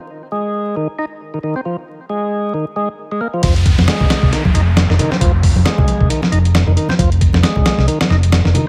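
Breakbeat with a raw, swaggering attitude, this short cut from a longer piece rides a swung sixteenth-note feel in 4/4. An overdriven tonewheel organ opens alone at 0.3 seconds, playing a thick, gritty riff over a rootless Fm7 through a slow rotary speaker with delay. At 3.4 seconds the drop arrives, bringing in a sampler-style soul kit that sits up front: compressed and tape-warm, with a thumpy kick, a medium-tuned snare and hi-hat, re-recorded in a large room. Alongside it a hollow-body short-scale electric bass, played with the fingers, adds a dark, round, amped low end, while an electronic downlifter sinks beneath the groove. From 3.8 seconds, ringing acoustic congas played with soft hands sit in the background. The mix stays dry, with little reverb, and a layer of vinyl crackle lends the whole piece a dusty, sampled character.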